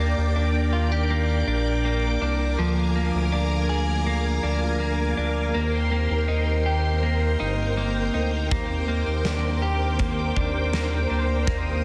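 Dreamy and blissful, this short dream pop excerpt in straight 4/4 sets lush, vintage string machine chords with ensemble chorus over clean, picked electric guitar arpeggios touched with subtle chorus and delay, a glossy, retro chorused synth bass sitting up front, and a huge arena drum kit with a fat snare and punchy kick that enters at 8.5 seconds, all in light room reverb under a dense, heavily limited modern master.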